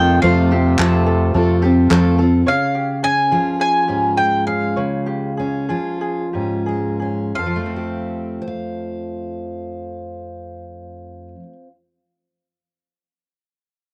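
A cassette home recording in a small room carries this short anthemic, uplifting indie folk passage in 4/4 at 85-108 BPM, built on F, then Db, then Fadd9. At the start, a bright bowl-back mandolin sings the melody up front over a full-bodied picked jumbo acoustic guitar with finger squeak, a round, punchy fingered electric bass, thumb-plucked ukulele arpeggios with tape echo, a nasal straight-muted trombone with light vibrato in the background, a very quiet, dark and lush bowed string section, and crisp group handclaps from 0.8 s. By 2.5 s most of the band has dropped out and the tempo slows, leaving the mandolin and ukulele over a fingerpicked steel-string guitar that runs to 11.7 s.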